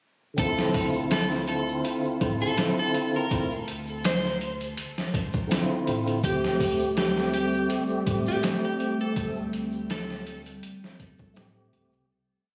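A looped, edited breakbeat at 82 BPM in 4/4, with a slight swing on the sixteenths, drives this brooding, hypnotic trip hop piece in D minor, tuned a touch flat to A4 = 436 Hz. The sampler-style kit sits up front, pitched down, muffled and overdriven, with a thumpy kick and a medium-tuned snare that sound re-recorded in a small room, while a compressed, saturated tube shaker adds loose acoustic motion underneath. A fat, lightly overdriven tonewheel organ holds spread chords with syncopated pushes through a fast rotary speaker, tremolo and tape echo, moving from Dm9 to Am7. A woody pizzicato upright bass with tube saturation plays a dub-style line, and a dark, slightly broken-up electric slide guitar, played with fingerpicks, repeats a riff through dub echo. From 6.7 seconds a warbling, nostalgic, detuned pad with slow attack, chorus and its own reverb adds mellow sustained chords. The whole groove fades out from 8.2 seconds, and the sound has the intimacy of a phone recording in a room, softened by light studio reverb.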